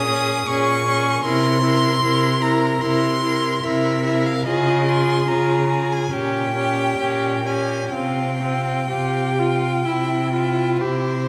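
A rich, close violin carries the melody up front with vibrato, soft attacks and expressive portamento, in this melancholic, elegiac slow romantic movement for string quartet, played with rubato in 4/4 and cut from a longer piece. Beneath it, a second violin holds an even inner line, a warm viola adds lightly vibrated accompaniment, and a cello anchors the bass up front with a smooth top, all four bowed through the full 11.3 seconds. The harmony drifts from Bbm7 and C7 through Db and Gdim/Bb to a Csus4 that settles on C, all bathed in a wet concert hall reverb.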